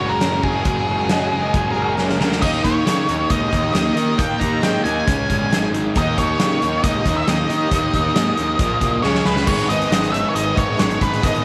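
Brooding and gritty, this classic rock passage at 136 BPM, cut from a longer piece, is led by a dark octave-fuzz lead guitar up front over a punchy, fat-snared arena drum kit, with crunchy and bright distorted electric guitars playing riffs in the background, a fuzzy picked electric bass, and a very quiet picked steel-string acoustic guitar with finger squeak. A compressed overdriven electric guitar adds a brief second line early on, and from 2.4 seconds a vintage organ-like ensemble string pad with phaser and chorus holds soft chords beneath. A faint fuzz lead guitar adds a second line from 9.0 seconds, and at 9.5 seconds, as the crunchy guitar drops out, a double-tracked overdriven semi-hollow guitar enters with a riff, all set in a moderate echo-chamber reverb.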